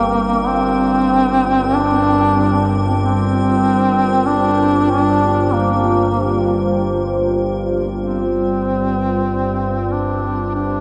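In a slow, straight 4/4 feel, this dark ambient drone moves at a crawl, and its mood is desolate and unsettling. A duduk carries the solo melody up front in a folk style, its soft attack and vibrato giving it a warm voice, with a delay trailing behind it. Beneath it, a dark analog pad holds deep, moody sustained chords built from detuned sawtooth and triangle tones with a sub octave, treated with chorus and a phaser. An evolving, nasal analog drone of sawtooth and pulse waves sits low and up front, slowly reshaped by pulse-width modulation and chorus. A faint, icy glass pad adds an airy, crystalline shimmer on a single high note, its sine and noise layers softened by chorus and its own reverb. The harmony rests on an Fsus2/G chord under a huge, wet reverb, and a fade-out begins at 4.7 seconds in this fragment cut from a longer piece.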